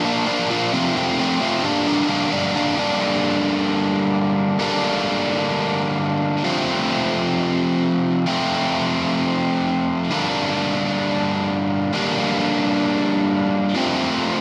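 A biting, overdriven electric guitar carries this driving, gritty rock clip on its own from 0.0 to 14.4 seconds, picked and double-tracked, sitting up front with a bright edge. The tempo is 131 BPM in a straight 4/4, and the music is in G minor. The guitar moves through Bb, F and G minor chords early on, settles on G minor, then shifts to F at 6.4 seconds before returning to G minor and closing on F. Its part stays between F2 and D4. A lush hall reverb with a long tail wraps the guitar in a big arena sound, and the clip is cut from a longer piece.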